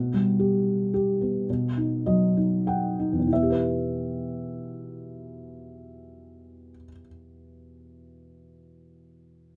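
In a rubato 6/8 at roughly 31-40 BPM by the dotted quarter, this short classical fragment in E minor unfolds as a lyrical solo for a felt-muted upright piano, dark and melancholic in mood, ranging from E2 to G5. The opening slows over its first 3.3 seconds as the harmony moves from Am13/B to B7 at 1.5 s, where a piano fill carries it toward E minor at 3.3 s. The instrument sits up front with thick felt, a soft, intimate tone and audible action noise, set in a modest small-room reverb.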